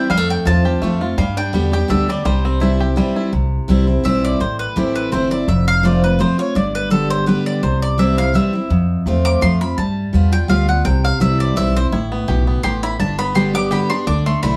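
In a lively 3/4 at 168 BPM with a light swing on the eighths, this rustic bluegrass excerpt in C major sets a full-bodied, up-front picked steel-string guitar over a thumpy, gut-strung upright bass. A bright, woody mandolin carries the melody and takes a solo from 3.3 s, while a twangy, percussive banjo plays arpeggios in the opening seconds and returns at 11.9 s. Moderate studio reverb lends the acoustic group a natural sense of room.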